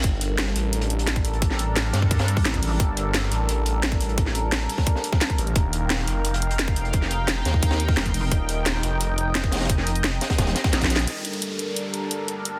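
A swirling, phased saw bass drives this dark, futuristic drum and bass excerpt, joined by a cracking, up-front electronic kit with a tight kick, a gritty breakbeat layer in the background, a bright, resonant pad pumping under sidechain, brief bursts of a heavy pulsing wobble bass, and a reverse cymbal and downlifter that return after a drum fill ending at 11.1 seconds.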